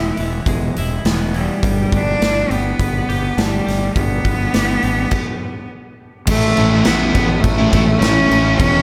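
A biting, intense cello with vibrato and slapback echo bows the melody from the start over twangy, lush-chorused twelve-string electric guitar arpeggios with analog delay and a growly fuzz bass, with a punchy, up-front big rock kit joining at 0.2 s, and after a stop at 5.1 s this anthemic, bittersweet quiet-loud alternative rock at 103 BPM turns heavier at 6.3 s as a sludgy overdriven guitar and a very quiet, dark fuzz guitar pick out a riff, all in a big arena-like space.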